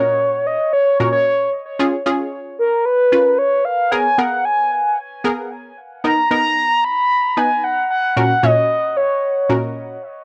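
This carefree, summery pop excerpt moves at 113 BPM in a straight 4/4, set in F# major with tuning a hair sharp at A4 = 441 Hz. A mellow, horn-like synth lead carries the melody from the start until 9.5 seconds, its round, full-bodied sawtooth tone shaped by a soft attack, long sustained notes, vibrato and a filter sweep, with chorus, analog delay and a vintage warble. Underneath, a punchy chord stab plays from the opening to 10.0 seconds, its bright, warm, detuned sawtooth sound colored by ring modulation and a filter pluck with a fast attack and short decay. Both parts sit up front and carry chorus and cassette tape coloring, and the harmony moves through F#/A#, C#, G#madd9 and Bmaj7 before returning to F#/A#. The whole is captured as a home recording on cassette in a small, wet booth with a brief 0.2-second decay, lending a cozy, lo-fi intimacy.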